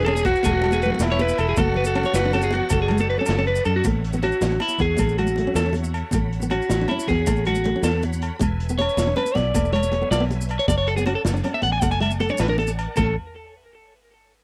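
A raspy, growling tenor saxophone opens this carefree highlife guitar band excerpt, joined from the start by a fingerpicked nylon-string guitar with full body and audible finger squeak, a twangy, slightly broken-up electric guitar playing picked arpeggios through tape echo, a round, foam-muted fingered bass up front, and a reedy tonewheel organ holding sustained chords in the background with slow rotary speaker, light overdrive and chorus vibrato. Almost at once a gritty, saturated breakbeat kit with dark cymbals and a tight kick settles in behind them, along with ringing agogo bells, bright high-tuned congas and grainy, mellow maracas, all in a straight 12/8. The saxophone drops out at 3.5 s, and a drum fill leads into a clean electric guitar solo that runs from 3.9 s to 13.0 s over the ensemble. On this home cassette recording, the saxophone, guitars, organ and drums all carry cassette tape coloring, set in light reverb.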